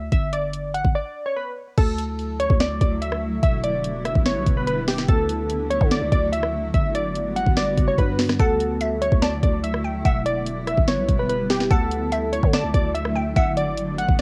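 A half-time trap groove of knocking kick, sharp snare and bright hi-hats drives this dreamy, triumphant hip hop piece, with glassy, airy digital keys carrying the melody up front over a growling, buzzy 808-style bass, a cloudy granular pad drifting in at 2.1 seconds with sustained chords, and a crystalline, nasal wavetable pluck adding a second line from 8.4 seconds, all captured as a home recording on cassette with light reverb.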